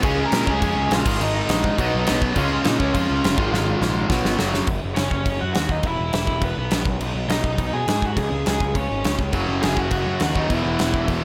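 A rowdy, upbeat punk rock excerpt bursts in at 206 BPM in straight 4/4, with a picked lead guitar through a small cranked amp carrying the melody in a dark, overdriven tone touched with delay, ranging from B3 up to Bb5. Underneath, a bright, double-tracked distorted electric guitar hammers out the riff up front, a compressed and picked wall that drops out at 4.7 seconds and returns at 9.3 seconds. A fuzz-laden picked electric bass holds the low end throughout, bright and punchy, from E1 to B2. The big acoustic rock kit sits up front with a punchy kick, fat snare and bright crash cymbals, and a drum fill from 3.5 seconds leads into the second section at 4.7 seconds. The harmony moves through power chords such as Ab5, B5, Gb5 and E5 alongside Db and B, all in a dry sound.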